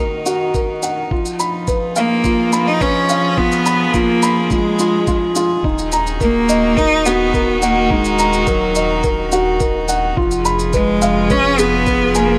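Piano and strings electronica in Eb minor at 106 BPM, this cinematic, melancholic excerpt moves in a straight 4/4 from a build-up into a drop at 5.6 seconds. A felt-muted upright piano plays a soft, intimate riff with audible action noise and short sustain, its notes trailed by digital delay. Beneath it, a string quartet holds sul tasto chords that feel floating and pure, pumping with sidechain compression alongside a round analog bass that sits deep and nasal. A sampler-style kick, pitched down and muffled, thumps in at 0.5 seconds, paired with a tape-colored, layered shaker. From 2.0 seconds a single bowed cello carries the melody up front, clear and intense with vibrato, over chords that shift between Ebm and Fdim. A lush hall reverb and small room ambience give the whole piece a spacious, chamber-like depth.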